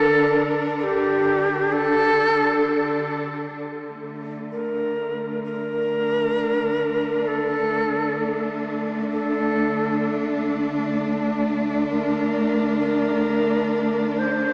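Ambient at 65 BPM, this unsettling, desolate fragment from a longer piece sets a bright, reedy shakuhachi melody with breathy chiff and tape echo over sustained, smooth bowed chords from a close cello section, both up front and both playing throughout, with the harmony settling onto D5 at 3.6 seconds, all steeped in a huge, wet reverb and heard through a small-speaker sound.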